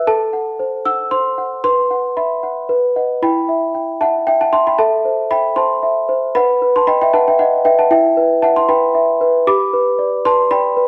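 A straight three-beat pulse carries this fragile, eerie classical lullaby, a short fragment of a longer piece played by a single worn celesta that sounds bell-like, sweet and slightly out of tune, sitting up front with a boxy, mellow tone from its soft felt hammers. The brief opening drifts through F#dim/A and Bsus4 to B, and at 3.2 s a new passage settles into Em, Am, B7 and back to Em before closing on G. A moderate recital-hall reverb wraps the instrument in a dark, warm production.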